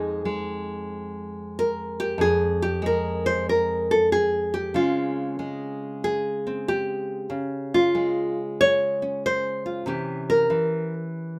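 A swinging 4/4 pulse at 94 BPM, with the eighth notes swung, carries this short solo jazz excerpt in F minor, cut from a longer piece. A lone fingerpicked nylon-string guitar plays throughout, from 0.0 to 11.4 seconds, ranging from F2 up to Db5. Its tone is full-bodied and deep, with an acoustic, classical character, and it sits up front in a light reverb. The harmony moves from Fm7 to Dbmaj7 at 4.7 seconds and arrives on a C7b9 at 9.9 seconds. The mood is moody yet swinging, the single guitar carrying the piece on its own.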